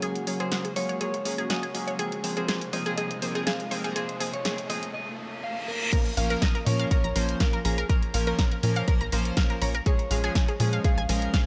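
Bittersweet and expansive, this progressive house clip opens with a build-up where a clean, picked electric guitar melody, crystalline arpeggios from a glassy wavetable pluck and retro, glossy polysynth stabs under a filter sweep all pump with sidechain and trail tape echo, over bright hats, a punchy snare, a tight sequencer bass and a morphing, detuned pad that fades by 4.9 s. A very quiet riser and reverse cymbal lead into the drop at 5.9 s, where an up-front, punchy electronic kick enters. The chords move from Gbadd9/Bb through Bbm to Db/Bb, all in a light reverb.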